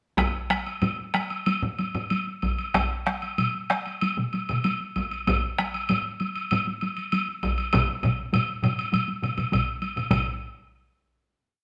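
Japanese traditional taiko drum ensemble music in straight 4/4, powerful and driving, speeding up from around 93 to 105 BPM across a short complete piece that closes with a final hit at 10.1 seconds. A solo taiko plays a repeating pattern with heavy sticks, close and dry, alongside two taiko ensembles each playing taiko phrases with hard sticks, while a woodblock keeps its own woody repeating pattern, sounding distant as if in a large room yet up front in the mix. At 2.7 seconds a fourth taiko group enters with heavy sticks and a compressed, saturated repeating pattern, all played live together in one room with a wet stone reverb.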